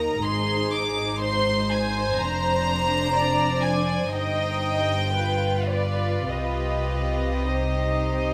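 This is a slow romantic classical movement for string orchestra, solemn and elegiac, moving in a flexible rubato over a short passage cut from a longer piece. Up front, a violin section carries the melody with a pure, floating tone, bowed sul tasto with a soft attack, while a second violin section beneath it adds an intimate line coloured by vibrato. A rich viola section fills in the accompaniment, and the bass is shared by a cello section with light vibrato and a dark, smooth-topped double bass section. All five sections sound together from start to finish, captured by close, detailed microphones in a studio with light reverb. The harmony moves from Ab through Bb9/F and Cm/G to a G7 at 5.1 seconds before settling on Cm at 6.3 seconds.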